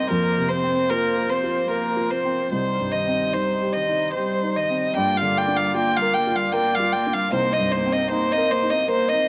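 This is an excerpt of melancholic, reflective neoclassical music for piano and strings in C minor, moving at 76 BPM in a rubato 3/4. From the first moment all four parts sound together, with a clear, smooth bowed violin carrying the melody up front between Bb4 and G5, its tone even and touched with vibrato. Beneath it, a rich solo cello traces a second line in the background, while a felt-muted upright piano gives soft, mellow, intimate accompaniment whose short-sustained notes span from C2 to Bb4. A hand-pumped harmonium holds sustained chords with a reedy, breathing tone set in a boxy small room. The harmony passes from Fsus4 to Cm, then at 5.0 seconds shifts to Gm7 before settling on Cm7, all wrapped in light small-room reverb until the cut at 9.3 seconds.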